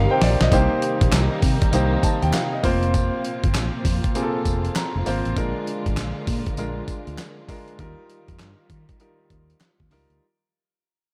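A swung 16th-note groove at 99 BPM in 4/4 drives this bouncy, punchy new jack swing excerpt in C minor, its gritty, overdriven sampler-style drum kit up front with a thumpy kick, medium-tuned snare, handclaps, hi-hat and tambourine treated with gated reverb, while a barely audible hollow group handclap sits in the background from 1.1 seconds. A round, foam-muted electric bass and a lush, woody bowed string section carry the low end and sustained chords under an up-front grand piano with deep bass, which opens with a fill alongside the drums and adds another at 4.5 seconds. The harmony moves from Cm7 through Fsus4 and Bb7 to Ebadd9 in a dry room as the passage fades out from 0.5 seconds.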